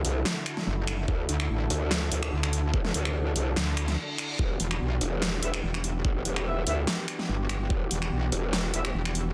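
Menacing and chaotic, this heavy, half-time wobble dubstep is cut from a longer piece, built on a growling, formant-filtered growl bass and a metallic FM wobble bass, both distorted, chorused and up front, over a huge, lush detuned supersaw pad that pumps under sidechain and a low-pass filter. An overdriven dubstep kit with a huge snare, bright hats and finger snaps pairs with a knocking electronic kick, while a reverse cymbal marks a short break at 4.0 seconds as the chords shift from Dadd9 to Em7. A distant, roomy brass ensemble adds classical-style stabs with tape echo from 5.4 seconds, all inside a dense, heavily limited modern master with light reverb.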